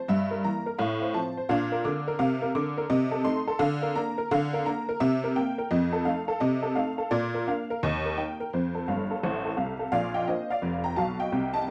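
Swinging and exuberant, this short stride piano passage cut from a longer jazz piece moves at a brisk 171 BPM in 4/4 with swung eighth notes. A lone honky-tonk upright piano carries everything from start to finish, its detuned, jangly tone sounding woody and a little boxy, with a vintage character and an up-front presence. Close, detailed miking and light reverb keep the instrument intimate, and its range stretches from deep bass notes up into the bright upper register. The opening passes through diminished and slash chords before the harmony settles into Bb major from 4.3 seconds, moving through C7 and F7 to Bb, Eb and F. A piano fill at 8.9 seconds leads into a new section that lands on Bb at 9.9 seconds, where the passage runs to its end at 11.7 seconds.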